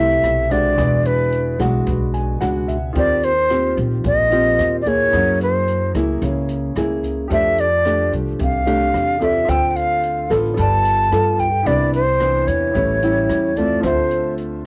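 Sunny and sophisticated, this short bossa nova fragment puts a breathy, mellow concert flute up front with a close-miked, tongued melody and vibrato, beside a fingerpicked nylon-string guitar. A woody, thumpy pizzicato upright bass carries a touch of tube saturation, while a small-room jazz kit with a boomy kick, hi-hat and rim click enters at 0.2 seconds. A clear, vintage grand piano sits in the background and adds a short fill at 1.9 seconds, over rich chords such as Fmaj9, Eb69 and Cmaj9, all with the soft haze of a dry home cassette recording on every part but the bass.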